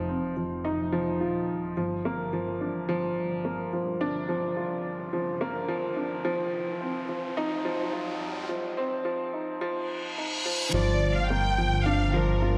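In a straight 4/4 pulse, this moving, intimate piece of piano and strings electronica unfolds as a build-up, with a filter sweep running across its opening stretch. A woody, slightly out-of-tune upright piano sits up front, playing a riff through a digital delay, while a deep, rumbling sawtooth bass beats and sustains darkly beneath it. Electronic sound effects join at 3.9 seconds, first a riser and then a reverse cymbal, leading into the drop at 10.7 seconds. There a lush bowed violin section enters with the melody, expressive with vibrato, soft attacks and portamento. The harmony shifts between F5 and Gm7, and the whole is set in a moderate scoring-stage reverb with small room ambience, cut from a longer piece.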